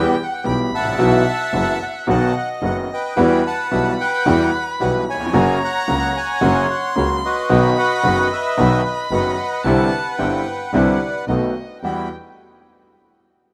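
In a rubato 4/4 at 111 BPM, this melancholic, passionate tango in E minor, cut from a longer piece, sets a reedy, close-miked bandoneon melody up front against a dark violin second line bowed with vibrato and portamento. A brilliant concert grand piano with deep bass and long sustain carries the accompaniment, while a focused, bowed double bass with vibrato holds the low end, and from 3.2 seconds a second, very quiet bandoneon adds dry, full stabs. Chords move from Em through Bsus4, F#, Cadd9 and B7 before settling back on Emadd9 at 11.8 seconds, all in a rough home demo mix with light reverb and studio ambience.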